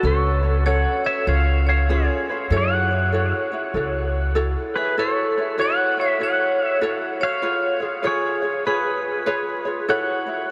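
Sunny and dreamy, this Hawaiian excerpt in F# minor swings gently at 97 BPM, its twangy, compressed pedal steel guitar carrying the melody up front with fingerpicked slides, volume swells, lush chorus and analog delay. A metallic, ringing vibraphone with medium motor vibrato and its own analog delay traces a second line while a light, fingerpicked acoustic ukulele accompanies, and a woody, thumpy pizzicato upright bass on gut strings plays up front until 4.5 s. The whole mix is soaked in a huge, wet ambient reverb, moving between F#m, C#7 and F#m7 chords across two statements of the same section.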